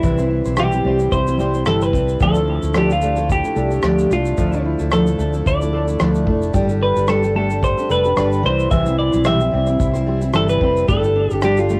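A twangy, compressed twelve-string electric guitar carries the melody up front with tape echo in this heartfelt, sunny acoustic pop excerpt at 111 BPM in C major with a light 16th-note swing, joined by a full-bodied jumbo steel-string acoustic with fresh strings, fingerpicked flamenco guitar arpeggios with finger squeak and tape echo, a dark, round fretless electric bass sitting forward in the mix, and an unplugged drum kit of tight kick, rim click and shaker played with bundle sticks, all set in a small-room home cassette recording as the chords move from C through Dmadd9 and Gsus2.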